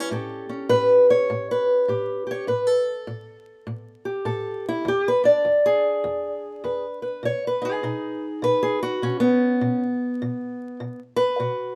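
A swung 4/4 groove at 101 BPM drives this short, swaggering and soulful fragment of acoustic country blues, cut from a longer piece and tuned a touch sharp of standard pitch. A lone fingerpicked old ladder-braced acoustic guitar carries everything from E2 to D5, its boxy tone sitting up front with audible finger squeak, moving from A7 to E7 at 4.9 seconds and landing on B at 7.2 seconds. Moderate studio reverb and a layer of vinyl crackle give the recording an aged, lived-in feel.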